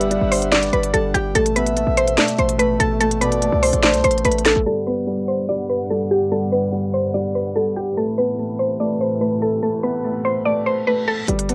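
Hip hop trap in a half-time feel, triumphant yet wistful, where a woody, chorused mallet-like synth pluck carries the melody over a dark, mellow grand piano with audible action noise and intimate sul tasto studio strings, while a breathy flute-like lead with tremolo and tape echo adds a second line early on; a punchy 808 bass and crisp, sharp-snared trap drums drop out after a fill ending at 4.7 seconds as a filter sweep takes over, and a reverse cymbal at 10.6 seconds brings the beat back, the whole mix carrying a home-cassette haze and light reverb.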